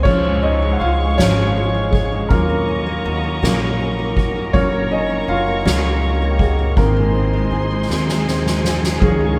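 A six-eight pop ballad in Db major at a slow 54 BPM, romantic and heartfelt, with a concert grand piano taking the lead through a short passage that moves from Db through Ebm7 and Gb to Ab. Beneath it, a fingerpicked steel-string guitar adds full-bodied arpeggios, a woody pizzicato upright bass anchors the low end, and a lush, intimate string section holds soft-attacked, sul tasto chords with vibrato. A soft-mallet drum kit with dark cymbals, a fat snare and a boomy kick plays throughout and adds a fill from 7.9 to 9.0 seconds, all sitting in a natural studio room with moderate reverb, like a band playing live together.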